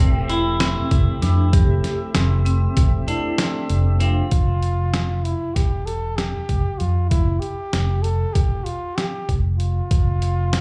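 In a straight 9/8 at 193 BPM counted in eighths, this driving, intricate progressive band instrumental in F major rides on a gritty, pitched-down boom bap sampler kit with a thumpy kick, entering at 0.3 seconds, and an up-front fretless electric bass coated in lush chorus. Over the opening Fmaj9, a clean picked semi-hollow guitar with delay, a bright, ringing vibraphone spinning arpeggios and a dark, round tonewheel organ with light overdrive and slow rotary speaker each carry slapback echo, and all three drop out by 4.3 seconds. A breathy, whispered trumpet then takes the melody from 4.0 seconds, carrying on over the Fmaj7sus2 that arrives at 4.3 seconds, the whole cut heard as a live gig through a club PA.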